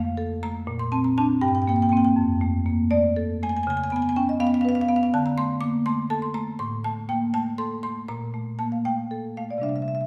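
A solo marimba played with medium hard mallets carries this reflective, hypnotic contemporary classical passage, its rosewood bars giving a woody, percussive tone. The piece moves in 6/8 at about 81 beats per minute, counted in dotted quarters, with a flexible rubato feel that lets the pulse breathe. The marimba covers a broad span from F2 up to D6 and plays throughout the 10.1 seconds of this section cut from a longer work. The harmony drifts through F, Bbadd9, Gmadd11 and F6 before arriving on Db7 at 3.7 seconds, then passes through D5 and Am7 to a Bbmaj7 color at 8.1 seconds. A generous recital hall reverb surrounds the instrument, and the listening position sits further back in the room, lending the music a spacious, meditative air.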